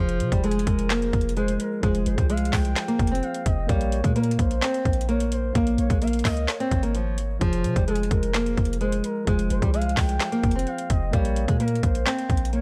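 A half-time trap groove of hard-clipped kick, woody snare, metallic hats and handclaps, roughened by 12-bit sampler grit, drives this menacing, brooding hip hop excerpt, where a dark, fingerpicked nylon-string guitar carries the melody up front over a deep, boomy 808-style bass, while a smooth, gliding triangle-toned lead with chorus, phaser, vibrato and tape echo adds a second line and a worn, slightly out-of-tune tine electric piano sits in the background as the chords move between Fm and Bbm.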